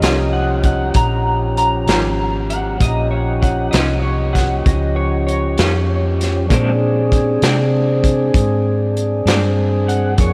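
An electric guitar through a small old amp carries the solo line in this swaggering, soulful slow blues in 12/8. It is cut from a longer piece, and the guitar's slightly broken-up, compressed, lo-fi tone is dressed in analog chorus and a diffuse ambient delay. Up front, a tonewheel organ holds clear, clean sustained chords through a slow rotary speaker, while a fingered hollow-body short-scale bass gives a round, dark, amped low end. A crunchy breakbeat drum kit of hi-hat, kick and snare sounds gritty and saturated, with a tight kick, a medium-tuned snare and a rolled-off top. Further back, a second guitar with tremolo plays accompaniment until 9.5 seconds, as the harmony moves from a rootless Eb9 to Bb9 at 6.5 seconds, all bathed in a long cathedral reverb that makes the mix dreamy.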